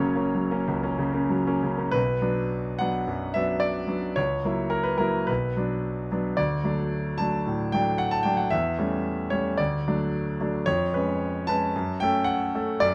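A bright concert grand piano opens alone on an F# chord, a brief stormy gesture before the music settles onto B minor at 2.0 seconds. This romantic character piece for solo piano moves at about 111 BPM in 4/4, though the beat is uneven and pushed and pulled with rubato. The piano spans B1 to A5, pairing a deep bass with a brilliant, natural upper register, and it sits up front in the sound. Its harmony turns from Bm through F#7/C# and back, then brightens toward D and A7/E before darkening again through C#7/E# to close this cut-off passage on F#m at 11.7 seconds, giving a bittersweet pull between minor and major. A moderate large-studio reverb with a 1.3-second tail surrounds the instrument.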